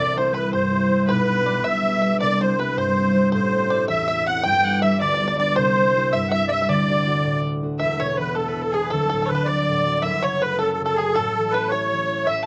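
A shimmering, wet-tuned musette accordion carries the melody up front from the first second of this lively, cheerful Celtic jig in 6/8 at 107 BPM, with second lines from a single bowed fiddle with a rich, nasal, gut-string tone and from a twangy, percussive banjo played with fingerpicks, set in the background with slapback echo, while an up-front concert harp gives a ringing accompaniment and the tune shifts from D mixolydian to E mixolydian at 7.8 s, all heard in a dry open-air sound in this cut from a longer piece.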